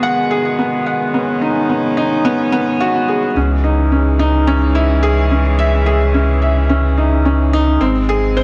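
A soft, mellow felt-muted upright piano riff with delay drives this intimate, melancholic piano-and-strings electronica in C# minor at 108 BPM, tuned to A4 = 436 Hz. It sits up front beside a deep, round sine sub bass with tube saturation, while a bowed string quartet holds nasal, floating sul tasto chords, all three parts sounding together from the start. A build-up on B6 gives way at 3.4 s to a drop on C#madd9, reaching G# at 7.8 s, all in a dark production with a moderate echo chamber reverb.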